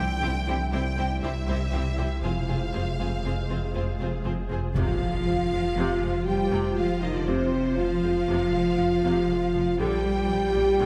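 A dark, soft-edged French horn section holds sustained chords at a distance through this tense, relentless excerpt of a hybrid orchestral and electronic film score in 5/4. Above it, a lush studio violin section carries an expressive vibrato melody while a focused symphonic violin section adds a second line, with smooth violas in the background and a blurred, evolving granular pad beneath. Rich cellos, bowed double basses and a clean, deep sine sub bass anchor the low end, an electronic impact sits in the background from 4.8 to 7.3 seconds, and a wet recital hall reverb surrounds the ensemble.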